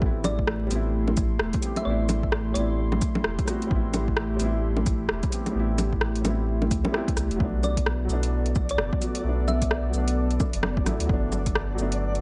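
Up-front overdriven deep house drums with metallic hi-hats, bongos, cabasa and rim click drive this melancholic, ghostly future garage excerpt in A dorian at 130 BPM with a swung 16th-note feel, alongside a punchy overdriven electronic kick, a round sine sub bass, a detuned, warbly tape-like pad and a soft felt-muted upright piano, both gritty with 12-bit sampler character and sidechain pumping, while a tine-like thumb-piano synth pluck carries brief melodic phrases through tape echo and a flickering grainy texture enters at 8.1 s under a light haze of vinyl crackle.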